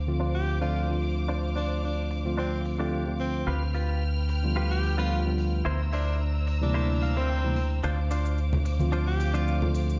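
This sensual, sleek nu-disco excerpt opens on a dark, woody violin section holding lush sustained chords in the distance, joined at once by a punchy, up-front fingered bass on D2 driven through an envelope filter. A tine electric piano played through a combo amp adds accompaniment with a grainy vintage sampler grit, and a twangy, direct-recorded clean guitar enters at 0.2 seconds with a compressed picked riff carrying subtle chorus, delay and a filter sweep, plus a short fill at 6.7 seconds. A clear tenor saxophone carries the melody with light vibrato and a smooth top, its lines trailed by digital delay, over a very quiet, crisp electronic hi-hat. At 7.8 seconds soft-handed cabasa and congas join as the harmony returns to Dm7, after passing through G7/D and C7/D in D minor. The groove sits at 110 BPM in 4/4 with a gentle swing on the sixteenths, and the mix has a stone-room reverb with a dulled top end, as if played on a big sound system in a bare room.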